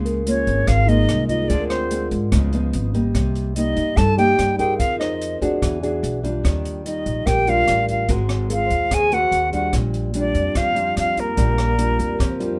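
An up-front silver concert flute carries the airy, vibrato-tinged melody over a hollow alto flute second line in this romantic, breezy bossa nova at 146 BPM in Bb major, backed by a small, thumb-plucked nylon-string guitar, a woody pizzicato upright bass, a mellow tine electric piano sitting in the background and an open jazz drum kit with boomy kick, hi-hat and rim click, all set in a moderate small-room reverb.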